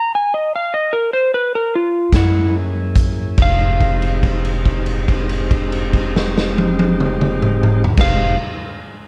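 A dark, intimate small-room recording with light reverb carries this brooding, mournful slow blues fragment in 12/8, where a slightly broken-up, compressed electric slide guitar sings the melody alone as the pace slows, until a punchy raw garage drum kit, a woody pizzicato upright bass and a smooth tonewheel organ with key click and slow rotary speaker enter on a Gb7 at 2.1 seconds, and a long held note rings out over Fm7 from 3.4 seconds.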